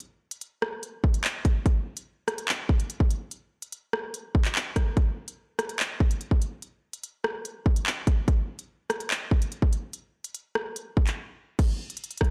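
Hip hop in a cold, menacing drill style, this drums-only excerpt runs at 145 BPM in 4/4 with a half-time feel. An electronic, produced drill kit sits up front, pairing a hard-clipped kick and crisp hi-hats with handclaps, rim clicks and crash cymbal, captured again in a large room yet carrying little reverb within a dark production. A short break arrives at 11.2 seconds before the kit plays on to 12.3 seconds.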